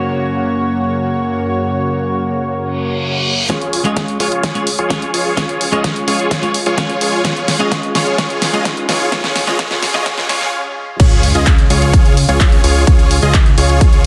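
A dense, heavily limited modern master with a moderate digital room sheen opens this anthemic, triumphant slice of festival progressive house, cut from a longer piece. A bright, twangy twelve-string electric guitar plays picked accompaniment through tape echo over a lush, chorused unison pad holding sustained chords in the background, both pumping with the sidechain. At 3.5 seconds, a punchy, up-front electronic kick arrives with a big-room dance kit of huge snare, handclaps, hi-hats, ride and crash, while a fat, evolving analog bass sits low and a thick, airy supersaw riff takes the lead, its filter sweeping across a long build-up and drum fill. Faint sound effects weave through: a reverse cymbal, riser, swell and sub drop. After a short break, the guitar having dropped out at 10.4 seconds, the track lands on an impact at 11.0 seconds and surges into the drop, with the detuned supersaw and bass driving the full groove.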